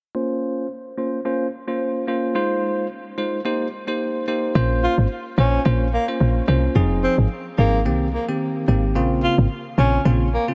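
Sultry and mellow, this afrobeats fragment in Bb dorian at 109 BPM opens with a bell-like tine electric piano under a filter sweep, circling Bbmadd9, Fm7 and Cm7, before a woody, punchy log drum bass and a breathy, whispered tenor saxophone with scooped notes and diffuse delay enter around 4.6 seconds, all soaked in a dreamy, huge reverb.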